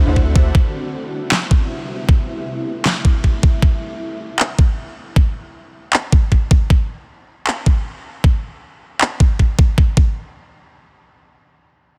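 A half-time future bass groove at 156 BPM rides a knocking, tape-warm electronic kick that runs from 0.2 to 10.1 seconds, joined by a fat, layered snare with a soft-clipped edge and handclaps, both up front with studio reverb, in a euphoric, playful cut from a longer piece. For the opening half second, a deep sine 808-style bass, a very quiet round, ring-modulated pluck and a fat, detuned sawtooth polysynth riff, sitting in the background with lush chorus and digital delay, all sound over D7 before Cmaj7 arrives. Entering at 0.3 seconds, a shimmering, ethereal granular pad with octave-up shimmer and sidechain pumping carries the harmony on through Cmaj7 and Am7 under a filter sweep until 3.6 seconds, leaving the drums in a dense, heavily limited digital ambience.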